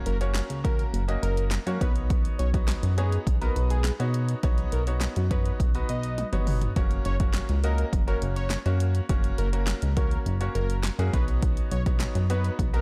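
A dry, dark mix frames this summery, upbeat dance-pop passage, cut from a longer piece, where a punchy, up-front deep house drum kit of kick, fat snare, handclaps, hi-hat and toms drives the groove and breaks into a fill at 6.2 seconds. A glossy, nasal chorused synth bass pumps with sidechain under a brilliant grand piano, whose intimate tone carries audible action noise and long sustain as it also pumps with the sidechain. A fat, detuned analog lead with a sub octave, vibrato and dub echo sings the melody over chords moving between F# and Badd9.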